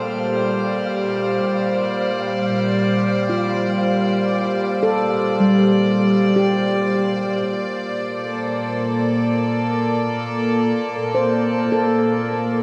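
Serene ambient music at 78 BPM in Bb major, cut from a longer piece, where a soft, bowed string section holds floating sustained chords up front while a ringing handpan plays meditative arpeggios through delay, a breathy wind-like tuned noise texture fades in behind them until 7.5 seconds, and a very quiet, resonant drone with moving overtones enters at 10.7 seconds, all within a cathedral reverb.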